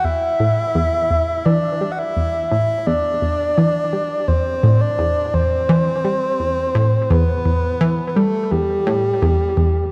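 Drenched in a long plate reverb, this hypnotic, mysterious ambient passage, cut from a longer piece, moves in a straight four-beat pulse over a single E minor chord. A round, detuned analog pluck with a fast attack and chorus plays a low riff, while a breathy, flute-like synth lead with vibrato and analog delay carries a sustained melody, both sitting up front from the first second. A filter sweep runs across the entire stretch, ending near 9.9 seconds.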